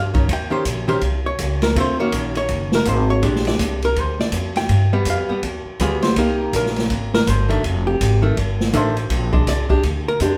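Playful and sophisticated, this brief cut from a longer small-group swing and bop piece moves at 163 BPM in Bb mixolydian with a swung eighth-note feel, the band playing live in one room with a moderate large-studio reverb. Up front, a dark, clean, compressed hollow-body archtop guitar comps through changes like Eb6, G7b9 and F13 before landing on Bb13, over a woody, growly pizzicato upright bass on steel strings. An acoustic open jazz kit, also up front, adds dark cymbals across ride and hi-hat, a medium-tuned snare and a boomy kick.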